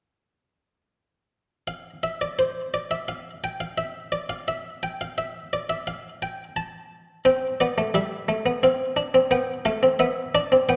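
A wet recital hall reverb surrounds this short cut from a longer classical piece, a stately and joyful baroque-style three-part fugue for harpsichord in 4/4 at 86 BPM with a straight feel, tuned to A4 = 439 Hz. A buff-stop harpsichord plays alone from 1.7 to 10.8 seconds, its muted, lute-like pluck sitting up front against the hall. The instrument has an Italian-style, airy character and ranges from G3 to A5. The harmony first settles on C at 7.2 seconds, then moves to Dm7 over C and closes on a rootless G over B at 10.0 seconds.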